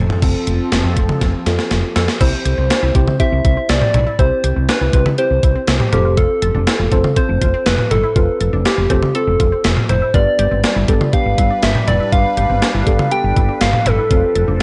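Nostalgic and wistful, this synth-pop excerpt at 121 BPM opens with a gated 80s drum machine fill with a thumpy kick and gated-reverb snare, a growly, woody fretless bass up front and muted, felt-like synth keys with chorus and phaser, while a swirling, detuned analog pad drifts in and out, returning at 10.7 seconds. From 2.0 seconds a gentle, warbling FM lead carries the melody with chorus and analog delay, and from 2.2 seconds a squelchy, resonant blip pluck arpeggiates in the background over chords moving between F and C. The whole excerpt has a dry, gritty cassette-tape sound.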